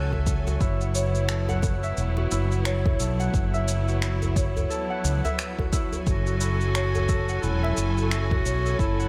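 Meditative organic downtempo at 88 BPM with a swung sixteenth feel, this excerpt drifts from F#m7 to Esus2 as a lush, bowed string section with vintage sampler grit and pumping holds sustained chords beneath ringing Celtic harp arpeggios washed in delay and shimmer reverb. A round, up-front fretless bass with chorus anchors the low end against a deep, overdriven electronic kick, gritty shaker and finger snaps, a cracking djembe in the background and a very quiet, breathy wind-like texture. At 6.1 seconds, as the harmony returns to F#m7, a clear, soft-attacked clarinet enters with a short classical-style solo line, trailed by delay and shimmer.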